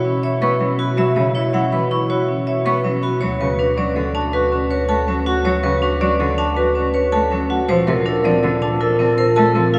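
Set in a straight 6/4 pulse, this hypnotic, bright stretch of minimalist classical pattern music, cut from a longer piece, has hard-mallet marimba carrying a percussive, boxy melody over metallic, ringing vibraphone arpeggios with the motor off, while a distant, mellow oboe with light vibrato adds a second line, an up-front solo bass clarinet holds a smooth bass, and a rich, focused bowed cello with vibrato joins the accompaniment at 0.4 seconds, all bathed in a long cathedral reverb as the harmony moves from Bsus4 through D6 to Bbmaj7.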